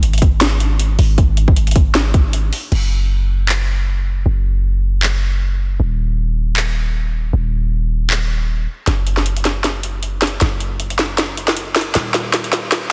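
Bittersweet and emotional, this future bass excerpt at 156 BPM moves in a half-time feel with swung 16ths, opening on a drop where a hard-clipped, up-front electronic kick hits until 2.2 s alongside a deep, boomy 808-style sine bass with a noise layer and sidechain pumping, while a tape-warm trap kit of sharp snare, metallic high-passed hats, handclaps and crash runs throughout, passing through a short break before a drum fill and filter sweep drive a build-up from 8.9 s, all within a dense, heavily limited master with light reverb.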